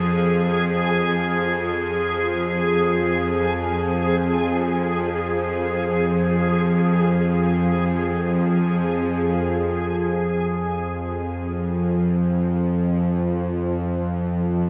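Unfolding in free time, this desolate, ominous dark ambient drone excerpt opens on an F minor chord, with a tense, string-like, bowed-like drone with vibrato and a noise layer sustaining from F2 to F3 alongside a reversed, granular, dreamy swelling texture on Ab4 that stops at 9.3 s, leaving the drone to sound alone until 14.7 s inside a huge, wet reverb.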